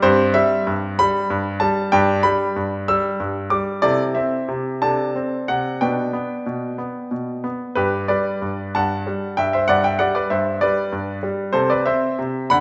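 A brilliant, polished grand piano sits up front in a reverberant recital hall, its short-sustained notes trailing into the room's lingering ambience. This solo classical-period sonatina fragment moves in a flexible, rubato 6/8, its serious, restless mood carried across a range from low bass to high treble. The opening phrase returns at 7.8 s before the passage breaks off at 12.6 s.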